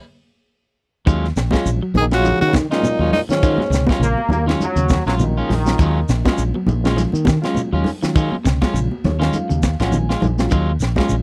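A raspy, gritty tenor saxophone leads this funky, intense afrobeat excerpt in Eb minor at 102 BPM, its short line from 2.0 to 3.9 s shadowed by a breathy, whispered trombone before a bright trombone section takes over the second line until 6.3 s. Underneath, after a stop at the top, a punchy fingered bass and a tight funk kit with a high-tuned snare drive a swung Ebm11 groove from 1.1 s. Two slightly broken-up picked electric guitars play arpeggios and stabs, while a grainy shekere joins, and soft-handed ringing congas and a reedy electric piano with fast tremolo sit in the background, the piano adding a fill from 8.7 s, all in a dry, close 1970s-style studio sound.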